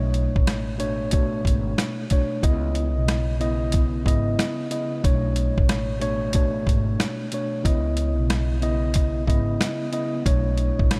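Boom-bap hip-hop in C# Phrygian at 92 BPM, this moody, reflective excerpt rides a 16th-note swing of 62% that gives the groove a loose, unhurried lean. A mellow tine electric piano sits up front with a clean tone heard through built-in speakers, filtered at both ends, and spans B2 to D#5 as it shifts between Bm9 and C#m9 chords every few seconds. Underneath, a pizzicato upright bass with steel strings adds a woody, growly low end between G#1 and C#2. The sampler-style drum kit enters at 0.1 seconds, compressed and pitched down for a gritty texture, with a thumpy kick, a high-tuned snare, rim clicks and hi-hat placed up front in the mix. Light reverb and digital ambience wrap the parts in a modest sense of space, and the piece is cut from a longer work, ending at 11.0 seconds on a return to Bm9.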